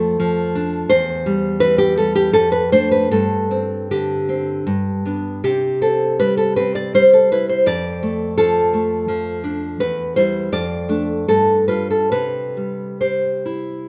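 A nylon-string guitar carries this tender, romantic excerpt alone, fingerpicked up front with a warm classical tone and finger squeak along the strings. The piece moves in 3/4 at a flexible rubato pace, drifting between 67 and 87 BPM, and sits in C major. Its harmony circles around Dm/F and C/E, passing through Gsus4 and G to settle on C at 5.4 seconds, then returns by way of a G9 to close on C at 12.1 seconds. The guitar spans from E2 up to D5, reaching from low bass notes to its upper register. A moderate scoring stage reverb lends the instrument a spacious halo, and the passage is a brief fragment of about 13.9 seconds taken from a longer piece.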